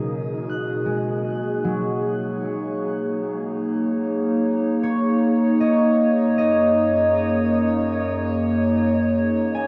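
Serene and melancholic, this free-time ambient excerpt, tuned to A4 = 439 Hz, sets a warbling, nostalgic, lo-fi pad of detuned, slow-attack sustained chords with chorus and shimmer reverb up front against a ringing, thumb-plucked concert harp playing arpeggios through diffuse delay and shimmer, all bathed in a huge 7.6-second reverb as the harmony moves from B to F# at 3.1 seconds.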